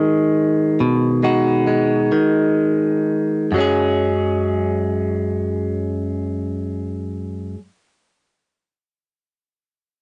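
Intimate and tender, this short folk fragment in 6/8 rests on a single clean electric guitar, picked, bright and twangy, compressed and placed up front, moving from a B6 chord to F#sus2 at 3.5 seconds. The pace eases back over the first 3.5 seconds before the guitar carries on until 7.6 seconds. A modest booth ambience and the dulled top end of a home cassette recording lend the sound a close, homespun character.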